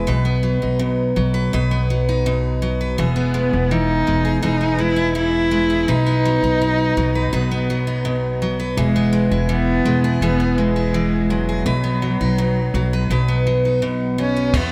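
Sunny and carefree, this excerpt of acoustic pop moves at an easy 83 BPM in a straight 4/4, with a full-bodied picked steel-string acoustic guitar and a woody, pizzicato upright bass sharing the opening as the harmony sways between B and E. At 3.0 seconds a single dark, bowed cello enters up front with vibrato and a touch of delay to carry the melody. At 14.5 seconds a compact cocktail drum kit lands a tight kick and crash, all set in light small-room reverb within a bright 1980s-style digital production.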